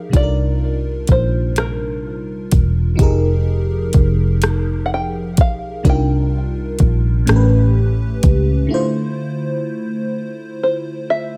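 A lush, dreamy FM electric piano with a soft pad layer, treated with chorus and phaser, opens this sultry, yearning slow six-eight R&B excerpt alongside a round, dark, foam-muted fingered electric bass, joined at once by an up-front electronic drum kit of soft kick, metallic hi-hat and rim click and by a plunky, twangy fingerpicked open-back banjo melody carrying digital delay, all in a dry, close sound until the drums drop out at 8.5 seconds and the bass at 8.7 seconds, leaving the banjo and electric piano to carry the closing section.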